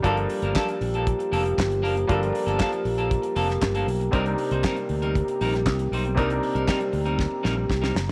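A light small-room reverb surrounds this danceable, driving disco excerpt, in G minor at 118 BPM in a straight 4/4, moving from Gm9 to Cm7 at 4.1 seconds. A damped 70s drum kit with a fat snare, tight kick, hi-hat and handclaps sits up front beside a round, punchy fingered electric bass, while a clean, picked electric guitar and a clear baby grand piano with short sustain fill in the accompaniment. A dark, smooth-topped French horn section holds tight sustained chords in classical style, and the drums close with a fill from 7.2 seconds.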